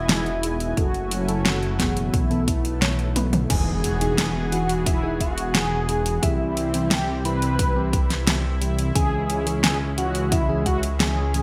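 Nostalgic and romantic, this synthwave excerpt at 88 BPM in E major sets a dark, brassy synth lead with chorus, tape and delay over a lush, warbling unison pad, a rumbling detuned saw bass, a round FM electric piano with phaser in the background, a punchy electronic kick and an up-front pop kit with a fat snare, metallic hats and gated reverb, while a drum fill at 3.2 seconds ushers in a pure synth bell line and a very quiet impact at 3.5 seconds, all bathed in a bright 1980s-style digital sheen.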